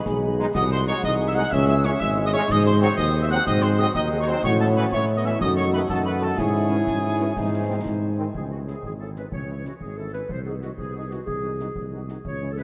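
Stern and resolute, this military-style march for wind band moves at 123 BPM in 6/8 in C# minor, with a warm trumpet section carrying the melody alongside a pure piccolo that drops out at 7.9 s, a background woodwind section, a clear euphonium, very quiet distant trombone chords, a close, up-front mellow tuba bass, French horn accompaniment and snare drum, bass drum and dark clash cymbals, all bathed in the long echo of a vast cathedral before the music shifts into a new section at 8.3 s.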